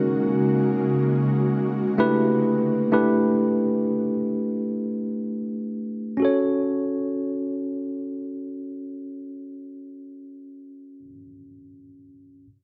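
A worn, slightly out-of-tune tine electric piano sits up front in this brief R&B excerpt in free time, its mellow, direct chords carrying a sensual, longing mood from the start to 12.5 seconds, moving from G#9sus4 to A9sus4 and settling on F#m at 6.2 seconds. Alongside it, an ethereal, airy pad with a slow attack, ensemble chorus and its own reverb holds full-bodied, detuned sustained chords only until 2.4 seconds, all within a light reverb.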